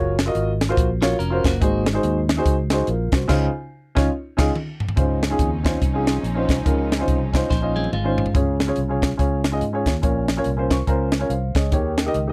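Reverent and soulful, this uptempo gospel excerpt swings at 142 BPM in Db major, with a dark, mellow grand piano and a round, punchy fingered electric bass moving through chords from Gbmaj7 to Dbmaj9 and Eb7, while a crisp fusion drum kit with a high-tuned snare drives a band accent and two fills, a clean, picked electric guitar adds brief second-line phrases, a warm, bowed string section with vibrato holds sustained chords in the background from 5.0 s, and the piano takes a fill at 10.5 s, all in a dry, close 1970s-style studio sound.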